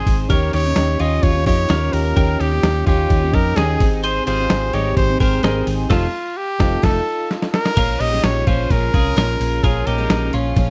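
A bright, up-front trumpet carries a bittersweet, wistful melody with slapback echo over shimmering picked twelve-string acoustic guitar, clean, compressed twelve-string electric guitar arpeggios and a round, punchy hollow-body bass in this jangly indie pop piece at 129 BPM, joined at 0.1 seconds by a gritty, pitched-down boom bap sampler-style drum kit and at 0.3 seconds by mellow electric-piano-like synth keys with chorus and tremolo, as a band accent and a drum fill lead into a Bbm7 chord at 7.8 seconds, captured in a dry, close 1970s-style studio sound.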